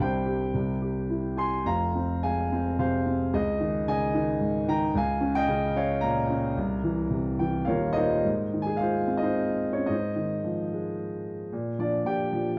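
A dark, mellow concert grand piano sits up front in this lyrical classical solo, its deep bass and long sustain carrying a sunny, hopeful mood in 3/4 at 109 BPM with uneven, rubato beats. The piece opens in F minor, and a piano fill from 7.1 s leads into Ab major at 8.2 s, where the second passage begins. A moderate concert hall reverb surrounds the somewhat boxy instrument in this short clip cut from a longer piece.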